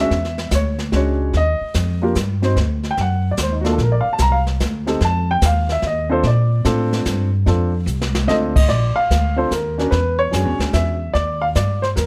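A dark, mellow upright piano and a woody pizzicato upright bass open this sophisticated jazz piano trio excerpt in a swung 3/4 at 147 BPM, with a brushed kit of dark cymbals and a boomy kick joining a moment later as the up-front piano takes a smooth, vintage-toned solo over chords moving from E13 through Gm and F7 to Bbmaj9, before a brief drum fill at 7.9 seconds leads into a new section at 8.7 seconds, all in a light reverb.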